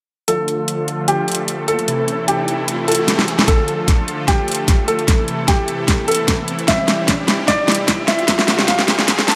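Swung half-time 16ths at 150 BPM drive this aggressive, heavy wobble dubstep in D minor, where a dubstep kit's huge snare and metallic hats sit up front, a polished baby grand piano carries the melody through dub echo, bright, detuned supersaw chords pump under sidechain with low-pass filter sweeps, a background riser enters at 1.6 s, and a knocking electronic kick joins at 3.5 s as the build-up begins, the whole mix set in a lush hall reverb.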